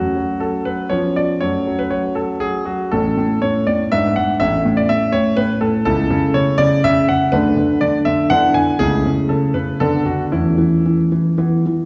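A solo concert grand piano, intimate and up front with audible action noise, deep bass and long sustain across a range from A1 to G#5, carries this graceful, cheerful classical-period sonatina fragment in a rubato 3/4 at 121 BPM, moving from F#m harmony into A major at 5.9 s and tuned to A4 = 442 Hz, all set in a wet recital hall reverb heard from further back in the room.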